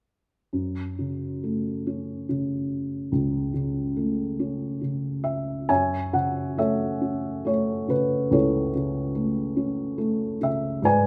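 Uneven, rubato beats in three give this reflective, wistful passage of lyrical classical solo piano its hesitant sway, cut from a longer piece. A felt-muted upright plays alone from 0.5 to 11.1 seconds, its soft, boxy, thick-felt tone sitting intimate and up front across a span from C#2 to G#5, as the harmony moves from F#m to F#m7 at 5.7 seconds. A moderate recital-hall reverb lends the dark, mellow sound a gentle halo of space.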